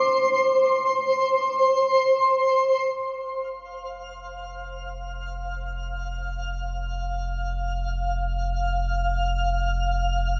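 Peaceful and warm, this ambient passage, taken from a longer piece, drifts in free time inside a vast, echoing space where a long cathedral reverb holds every sound. A felt-muted upright piano opens with soft, intimate arpeggios high in its register, its mellow tone carried off by a diffuse ambient delay before it stops at 3.0 seconds. Throughout, a twinkling granular texture sits up front, sparkling with an octave-up FM shimmer, slow attack and long release, and it fades in further from 2.9 seconds onward. At 2.9 seconds a deep, round sine sub bass also fades in on a low F, sustained and close, anchoring the shimmering layer above it. The result is a gentle, spacious wash that settles from delicate piano into sustained glow.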